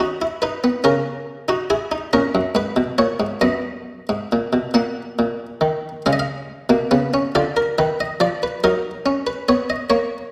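In a straight 6/8, this short section of a baroque-style three-voice fugue for solo buff-stop harpsichord moves with a driving yet contemplative character. The Italian-style instrument sits up front, its plucked tone muted, lute-like and dry, while a recital hall's generous reverb surrounds it. At 4.8 s the music turns to a new harmonic area and a second section, and the passage breaks off at 10.3 s as part of a longer piece.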